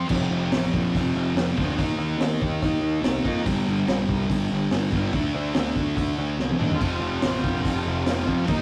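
This raw garage rock excerpt opens with a thick, bright fuzz guitar riff, double-tracked and up front, alongside a brief buzzy touch of overdriven combo organ. From 0.1 s a growly fuzz picked electric bass and a crunchy breakbeat drum kit join in, driving a straight 4/4 at 143 BPM. The kit sounds dark and saturated with a rolled-off top, pairing a punchy kick and high-tuned snare with dark cymbals, hi-hat and toms. The chords move through F5, Eb5, G5 and D5 before arriving on F, and a drum fill at 6.4 s leads into the organ's return at 6.7 s, its vintage sustained chords wobbling with heavy vibrato in the background. Light reverb and the rough, saturated sound of a rehearsal room give the recording a gritty character.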